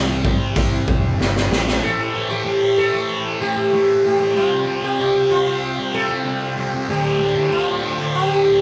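A buzzing, shimmering sitar carries the melody from the first moment of this hypnotic, trippy psychedelic rock excerpt. Beneath it, a reedy combo organ holds sustained chords with heavy vibrato in the background, while a thick, double-tracked fuzz guitar riff sits up front with distortion and phaser. A round, overdriven fuzz bass and a raw garage drum kit drive the opening; the kit is gritty and saturated, with a boomy kick and a high-tuned snare, and very quiet, soft-handed congas sit alongside. The drums play a fill from 1.2 seconds, and by 1.8 seconds the bass, drums and congas have stopped. From there the sitar, organ and fuzz guitar continue together through Am7, Csus4 and Dm7, played live in one room with a moderate large-studio reverb.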